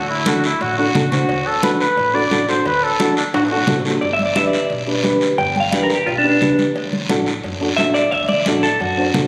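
Festive and danceable, this short cut from a longer cumbia piece moves at a brisk 176 BPM in G major, with a straight 4/4 feel. A clear, vibrato-laden flugelhorn opens up front with a vintage pop-style solo over a D chord, while a woody, growly pizzicato upright bass holds the low end and a dark, boxy upright piano comps with audible action noise and long sustain. Bright, hard-handed congas and a raspy guiro sit close and dry, ringing cowbell and timbales sound from the background, and a drum fill arrives from 3.3 to 4.0 seconds. At 4.0 seconds the harmony moves to G as a twangy, clean electric guitar takes over the melody up front, fingered and coloured by spring reverb and slapback echo, before the chords return to D at 6.8 seconds. The whole performance has the roomy, club-like sound of a phone capture in a reverberant space.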